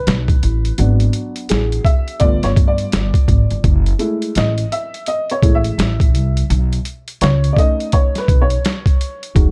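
Swung sixteenths at 84 BPM in 4/4 carry this nocturnal, smoky jazz-hop excerpt, where a compressed, gritty, tape-warm boom bap sampler-style kit, pitched down with a thumpy kick, medium-tuned snare and hi-hat, sits up front beside an acoustic pizzicato upright bass with a woody gut-string tone, both arriving at 0.1 s, while a dark, mellow, boxy upright piano, slightly detuned and with short sustain, solos over B7, G#m7b5, G9 and F#m7 before returning to B7, inside a small room ambience.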